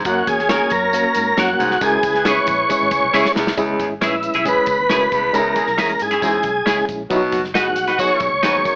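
Through an AM-radio sound and moderate studio reverb, this driving, passionate slice of uptempo 1960s-style soul sets a smooth, up-front tonewheel organ melody with key click against a raspy baritone saxophone riff, a barky, overdriven reed electric piano with fast tremolo, twangy twelve-string electric guitar stabs, a mellow, distant horn section, a round, foam-muted electric bass, a natural drum kit with a tight kick, and a jingly tambourine in the background, with the electric piano and drums adding fills just before a metallic, very quiet vibraphone joins at 4.0 seconds.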